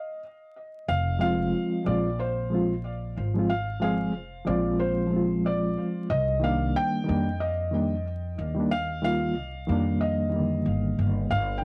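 A soft, intimate felt-muted upright piano opens this smoky, cinematic trip hop excerpt alone, its high melody trailing tape echo, before a woody, growly pizzicato upright bass enters up front at 0.9 seconds and a reedy, worn, slightly out-of-tune electric piano joins with tremolo and cassette grit at 1.2 seconds, all moving from F minor to C minor seventh at 6.1 seconds over a swung sixteenth-note feel, a small room and a home cassette recording flecked with vinyl crackle.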